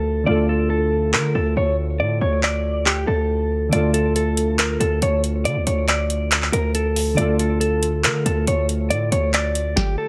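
A light reverb frames this dark, menacing trap excerpt, moving at 139 BPM in a half-time 4/4 feel in D harmonic minor over a single D minor chord. A clean, compressed electric guitar carries the melody up front, colored by spring reverb, delay and a low-pass filter. Warbling, detuned lo-fi synth keys under chorus add nostalgic accompaniment, and a saturated, aggressive 808-style bass rumbles beneath before a booming analog drum machine with a deep kick, tonal snare, handclaps and metallic hats enters at 1.1 seconds.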